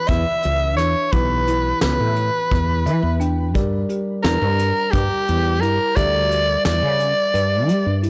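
A blown-out, overdriven recording with light reverb carries this intricate, driving progressive instrumental in 7/8, cut from a longer piece. A raspy, gritty soprano saxophone leads up front with vibrato and delay. A dark, growly fretless bass with transformer saturation and analog chorus sits close beside it, over a small-room brush kit with a fat, softly clipped snare and tight kick. In the background, a bell-like tine electric piano comps and plays a brief fill at 2.5 seconds, and a dry, rustic marimba with soft mallets adds arpeggios from 0.8 seconds.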